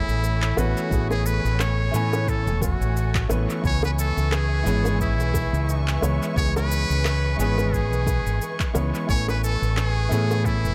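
Swung sixteenths at 88 BPM in 4/4 carry this smooth, warm sunset chillout excerpt in A major, where a buzzy, metal-muted trumpet sings a jazz-style melody through analog delay over a vintage grand piano with its own delay, lush bowed strings with vibrato in the background, a dark, round fretless bass up front with tube saturation and analog chorus, a deep, layered electronic kick, tape-toned electronic shaker and handclaps trailing dub echo, and very quiet, high-tuned bongos, the harmony moving from Amaj9 to C#m7 at 3.6 seconds and back at 9.1 seconds in an echo-heavy mix.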